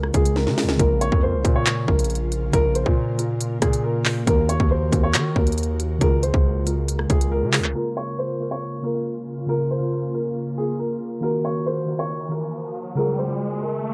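A dark, boxy grand piano melody with audible action noise opens this ominous, cold half-time drill excerpt in Bb minor at 138 BPM, set over muted felt-like synth keys, an ethereal detuned pad in the background, a punchy 808-style bass and an up-front drill kit with a hard-clipped kick, sharp snare and crisp hats that stop at 7.7 seconds, after which a filter sweep and an electronic riser from 11.8 seconds carry the gritty, low-passed recording through chords moving among Db, Bbm and Ebm.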